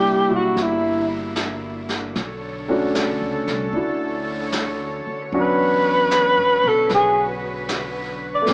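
A breathy alto saxophone opens this tender, romantic jazz ballad excerpt, playing the melody up front with soft, scooped notes, vibrato and a whispered, intimate quality, set in a plate reverb. Beneath it from the start, a concert grand piano with a natural tone and deep bass supplies accompaniment, while a cello section bowed sul tasto holds sustained chords with light vibrato and a close, soft attack. A pizzicato upright bass adds a woody, thumpy low end in the background. At 0.6 s a brush drum kit enters, distant and roomy with a rolled-off top, using brushed snare and hi-hat. The swung ballad moves through rich extended chords, and the whole recording carries a moderate studio reverb and a small speaker sound.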